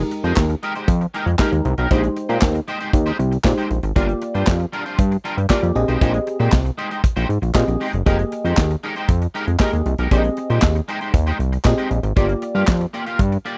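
A fat, detuned analog bass with a filter sweep sits up front in this danceable, late-night boogie funk excerpt, joined by a tight, natural-sounding acoustic drum kit, a glassy, bell-like FM electric piano with chorus, a twangy, slightly broken-up electric guitar riff with ensemble chorus, and very quiet, hollow group handclaps, all cycling through Fm11, Bb13sus4 and Gm7 in a dry, close studio sound.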